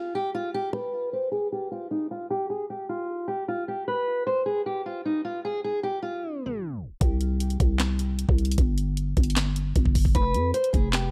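Brooding and eerie, this dark half-time trap and hip hop fragment at 153 BPM opens with a fingerpicked steel-string acoustic guitar melody, its finger squeak audible through a low-pass filter sweep and tape echo, until a tape stop at 6.2 seconds gives way at 7.0 seconds to a growling, buzzy 808-style bass and an up-front trap kit of knocking kick, sharp snare, handclaps and bright hi-hats, all set in a digital ambience.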